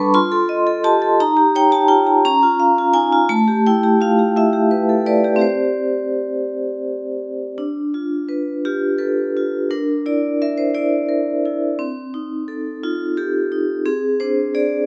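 A solo vibraphone, struck with medium hard mallets and shimmering with a medium motor vibrato, carries this reflective, hypnotic contemporary classical piece in 6/8, its bright, ringing tone sitting up front across a range from G3 to D6. Its harmonies drift through rich extended chords such as F9, Eb9 and Asus2 before shifting at 7.6 s to a darker stretch of Dm6, C9/D and Cm6, settling on Csus2. Close, detailed miking catches every metallic overtone, while a stone room reverb lends a lingering halo to this short cut from a longer work.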